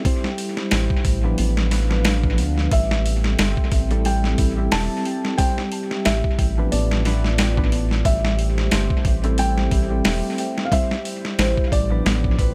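Melancholic and brooding, this trip hop excerpt in A minor moves at 90 BPM with a lightly swung 4/4 feel, built on a gritty, pitched-down boom bap sampler-style kit with a thumpy kick and tape echo, and a round, deep analog bass entering at 0.7 seconds up front. A clean, fingered electric guitar with harmonic tremolo and tape echo plays alongside a detuned analog pad with chorus and a ringing Celtic harp with 12-bit sampler grit, the pad and harp sitting in the background, all cycling through C, Bdim/A and Am7. From 2.7 seconds a soft, felt-muted upright piano carries the melody, trailed by dub echo in a dry but echo-heavy mix.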